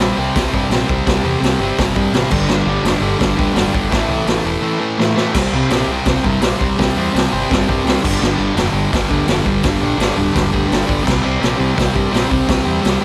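A straight 4/4 pulse at 168 BPM drives this gritty, raw garage rock fragment, where a bright, double-tracked fuzz guitar riff sits up front cycling through C5, G5 and A5 chords over a growling, overdriven picked bass and a saturated drum kit with a boomy kick and a rolled-off top in a small room, the kit marking the return of the opening section with a fill at 5.0 seconds.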